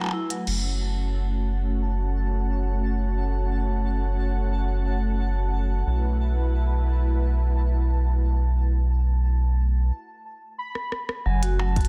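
Cerebral and glitchy, this free-time IDM excerpt in F# minor rests on a smooth, detuned analog pad with chorus and a round, dark analog bass, up front with tube saturation, that enters at 0.5 seconds and moves from F#m to B7sus4. A faint pulsing gated texture with chorus and built-in reverb hangs high above, while a metallic, band-limited vibraphone with 12-bit sampler grit and tape echo and a glitchy drum kit of clicky hats, rim clicks, crash and percussion blips appear only briefly at the edges. Near the close, a velvety, wave-folded synth lead with vibrato enters at 10.6 seconds, just before a drum fill, and a deep electronic kick lands at 11.8 seconds in the dense, heavily limited digital mix.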